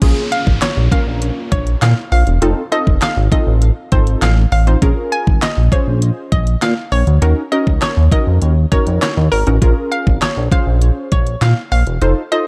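Bittersweet yet energetic, this dance-pop passage is taken from a longer piece and sits entirely within a drop, moving through minor seventh chords with a turn to a dominant seventh along the way. A chorused synth bass sits up front, glossy and retro, blending pulse-wave and sawtooth tones with pulse-width modulation, a filter sweep and a moving notch, and its sidechain pumping gives it a breathing motion. The pop drum kit is electronic and layered, with a knocking kick, a deep snare, handclaps, hi-hat and crash cymbal, all overdriven and re-recorded in a small room. Punchy chord stabs, detuned and decaying with a filter pluck and chorus, pump beneath a hollow, bouncy square pluck that carries the melody from 0.3 seconds, bright and treated with chorus, sidechain pumping and digital delay. An electronic downlifter sweeps through the opening until 4.8 seconds, all set in a digital ambience with a dark, warm production.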